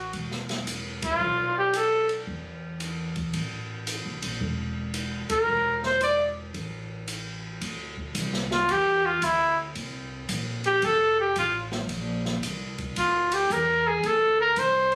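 Captured on a phone in a studio room with light reverb and compression, this smoky, swinging excerpt of small-group swing and bop at 112 BPM puts a clear, vintage trumpet with vibrato up front over woody pizzicato upright bass and an acoustic drum kit with dark cymbals and a boomy kick, the band hitting accents at 0.9 and 5.2 seconds before the key moves from A minor to D minor at 7.6 seconds, where the trumpet takes a solo.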